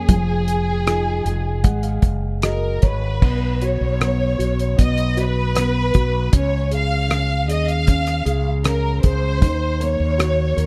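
A lush, bowed violin section carries the melody with expressive vibrato in this heartfelt, hopeful pop ballad at 77 BPM in a straight 4/4, moving through Fm7, Gbmaj13 and Cbsus2 toward Db and Ebm. A concert grand piano with deep bass accompanies and plays a fill from 0.9 to 3.2 seconds, while a round, direct fretless electric bass sits up front. A dry 70s drum kit with a tight kick, rim clicks, hi-hat, crash cymbal and a rolled-off top enters at 0.1 seconds, all within a dark, warm studio production cut from a longer piece.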